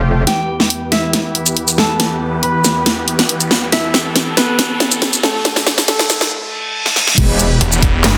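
Heavy wobble dubstep in E minor at 139 BPM with a half-time feel, menacing in mood, where a smooth grand piano melody with tape echo rides over huge, lush supersaw chords carrying sampler grit, sidechain pumping and a filter sweep, while a dubstep kit with a huge, softly clipped snare, handclaps, hi-hat, shaker and crash fills through the build-up, a background riser and reverse cymbal lead into the drop at 7.2 seconds, where an impact, a knocking electronic kick and a metallic, chorused wobble bass hit before a snarling, growling distorted saw bass takes over at 7.6 seconds in a dense, heavily limited mix with moderate room reverb.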